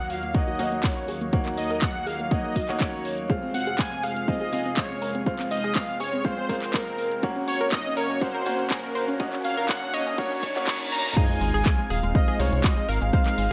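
Progressive house at 122 BPM in 4/4, this driving, expansive clip is cut from a longer piece and spends most of its length in a build-up before a drop at 11.2 seconds. A thick, bold unison lead carries the melody over an airy, breathy pad holding sustained chords in the background, while a tight sequenced synth runs arpeggios under a filter sweep through the build and a clear grand piano adds stabs with long sustain. The lead, pad, arpeggio synth and piano all pump with sidechain, and the lead, synth and piano carry digital delay. A house drum kit with bright, overdriven hats, handclaps and crash cymbal joins at 0.1 seconds, and a punchy, overdriven electronic kick sits up front from 0.3 seconds. Very quiet effects, including a riser, sub drop and a reverse cymbal just before the drop, lead into an impact, where a round, deep analog bass enters at 11.4 seconds as the harmony moves from Ebm7 through Fm and Gb to Ab6. 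A moderate digital room reverb gives the mix its sense of space.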